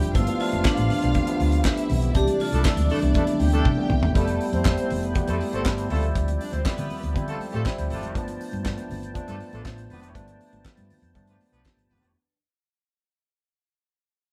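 A live-room disco cut at 120 BPM, danceable and glamorous, where a fat, dry 70s drum kit with handclaps and a round, hollow-body fingered bass drive beneath clean tine electric piano, lush bowed strings until 7.6 s, a mellow, lightly overdriven tonewheel organ with slow rotary swirl in the background, very quiet high-tuned congas, a metallic hard-mallet vibraphone melody that rings out only until 3.9 s, and vintage horn stabs in octaves from 2.5 s, with a band accent and drum fill leading into a fade-out from 4.2 s over chords from G9 to Fmaj9#11 and Dm11.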